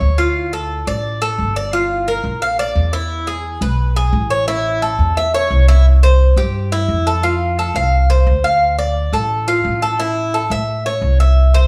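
From the first beat, a Cuban tres and an upright bass play together in this sultry Cuban son and guajira cut from a longer piece, moving at a brisk 174 BPM in a straight 4/4 feel in D minor. The tres spins picked arpeggios from E4 to F5, its paired, partly octave-doubled strings giving a warm, metallic shimmer. Beneath it, the pizzicato upright bass, with its steel strings, holds the low end between G1 and A2 with a woody, warm tone, sitting slightly louder than the tres. Both instruments sound up front within a moderate recital-hall reverb that adds a gentle sense of space. The first half circles through Dm, Gm7, E and A, and from 5.9 seconds the harmony opens onto C and F5 before returning through Dm to A as the passage ends at 11.7 seconds.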